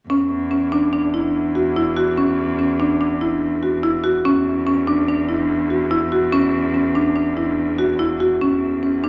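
A contemporary instrumental piece in 5/4 at 144 BPM, this short section cut from a longer work carries a shimmering, hopeful mood with a straight feel and tuning set to A4 = 441 Hz. A marimba struck with medium mallets plays arpeggios between C#4 and F#4 from 0.1 to 9.1 seconds, its rosewood bars giving a woody, warm tone that sits up front. Beneath it, a single bowed cello holds the bass on E2 over the same span, its rich, smooth, even sound carrying vibrato at a lower level than the marimba. The harmony rests on a rootless Dmaj7sus2 over E. A wet scoring stage reverb with a 1.6 second decay surrounds the whole, lending the short passage a spacious, suspended air.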